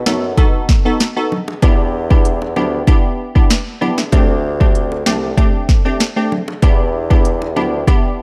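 A dark, reverb-filled studio production frames this dancehall cut, taken from a longer piece and moving at 96 BPM in 4/4 with a straight, tough and bouncy feel in E minor. Up front, an electronic afro-pop drum kit drives the groove with a deep kick, a sharp snare and smooth, tape-tinged hi-hats. A bright wavetable chord stab sits alongside it, digital and crisp, with a fast attack and a decaying tail, while its detuned unison voices evolve under a filter sweep as the harmony moves from B7 to Em7, D7sus4 and back to Em7. Beneath them, a bassoon carries the bass line in a classical style, its warm tone touched with light vibrato. Tight, high-tuned acoustic bongos played with hard hands sit in the background in a live room, and the stab sounds alone for the last moments until 8.2 seconds.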